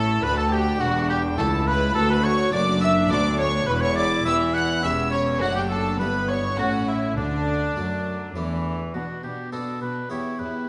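A clear oboe and a chamber violin section open together on the melody, the violins sounding above the oboe while a second violin line shares the oboe's range. Beneath them, a viola section fills in the accompaniment alongside an airy, bright French-style harpsichord set in the background, and a cello section and double bass section carry the bass with a rich, gut-string, period-style tone. The strings are bowed with light vibrato and a reedy edge, the violins sounding close and the cellos faintly nasal. This brilliant, lively baroque-style concerto movement in triple metre moves through a cadence before a new section begins at 8.9 seconds, when the double bass drops out and the harmony turns toward minor chords. The cellos stop at 10.5 seconds. A recital hall reverb gives the ensemble a resonant, soft-topped sound, and the passage is cut from a longer piece.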